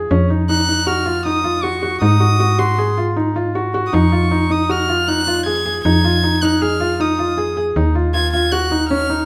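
In a straight 5/4 at 157 BPM, this hypnotic, restless contemporary chamber piece, cut from a longer work, sets felt-muted upright piano arpeggios, intimate and mellow with audible action noise, over a snappy, metallic-attack FM slap bass, while a single pure, floating violin played sul tasto enters at 0.5 s high above them, all in a reverberant recital hall over chords such as Gb5/F, Dbsus2/F and Ebm.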